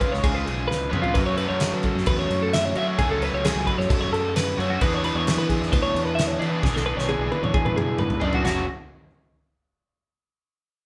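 Recorded as a band playing live in one room with moderate studio reverb, this intricate, restless math rock and midwest emo excerpt opens with a bright, twangy, compressed twelve-string electric guitar spinning clean picked arpeggios alongside an overdriven, double-tracked garage guitar riff that sits up front and a loose acoustic kit with a fat snare, punchy kick and dark cymbals. A growling fingered bass joins almost at once, adding amped grit beneath them, and the kit throws in fills at 0.7 and 6.6 seconds. The harmony moves from C#7 to F#m and E7 before landing on F#5 at 8.4 seconds as a new section begins.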